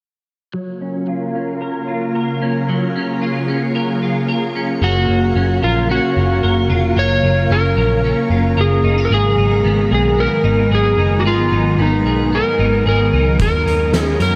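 A dark, slightly broken-up slide guitar with digital delay carries the melody from 4.8 seconds beside a round, foam-muted picked bass in this dreamy, ethereal dream pop piece at 112 BPM in F# major, floating over twangy, compressed clean guitar arpeggios and a warbling, detuned airy pad, both with chorus, all bathed in a moderate shimmer reverb, with a filter sweep in the opening seconds, before an oversized, low-tuned drum kit with a fat snare and punchy kick enters at 13.4 seconds.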